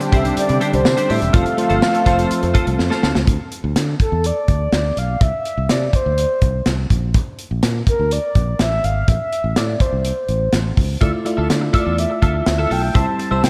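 Opening at 0.0 s with a glassy FM electric piano, a detuned sawtooth pad, a chorused twelve-string electric guitar riff and a dark, tight studio drum kit with tambourine, this nostalgic, uplifting 1980s-style pop excerpt at 124 BPM soon adds a round fretless bass and an up-front, horn-like synth lead with vibrato and tape echo, a very quiet buzzing marimba flickering in briefly before a drum fill at 2.8 s, then the piano and guitar drop out until returning at 11.0 s over chords moving from Csus2 through Bb and Am to Dmadd9, all set in a dreamy, reverb-soaked hall.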